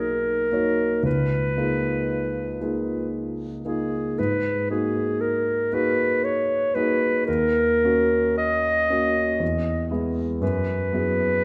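A clear clarinet and a warm concert grand piano begin together in this luminous, dreamy impressionist duo, a short passage cut from a longer classical piece. The clarinet carries the melody up front in a classical solo style, moving between G#4 and D#5, while the piano accompanies from C#2 to C#5, its deep bass giving the texture a warm foundation. The music moves slowly at 58 BPM in 3/4 with a rubato feel, and the instruments are tuned to A4 = 441 Hz. The harmony drifts through rich colours, from Bmaj9 and C#13 to G#sus2 at 4.2 seconds, then D#m7, Emaj7 and a closing Eadd9/F#. Both parts sit in a wet concert hall reverb with a 2.1 second decay, which lends the 11.4 seconds a floating, spacious glow.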